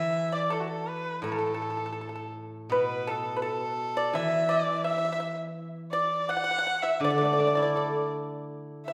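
A rich, nasal erhu carries the melody up front, its single bowed line sliding between notes with light vibrato, earthy in tone and smooth at the top of its range from F#4 to F#5. Alongside it a dry, percussive pipa plays a second line from A4 to F#5, its fingerpicked notes sitting just behind the erhu. A steel-string zither, also up front, gives the accompaniment a mellow, ringing, silvery shimmer as it spans from A2 to A4. This graceful, pastoral piece of Chinese traditional chamber music moves in a rubato 2/4 around 83 BPM in an A zhi mode, and it is cut from a longer work, lasting about 8.9 seconds with a new section arriving at 2.7 seconds. The ensemble sounds as if it were captured in a church or concert hall, wrapped in a lingering recital-hall reverb.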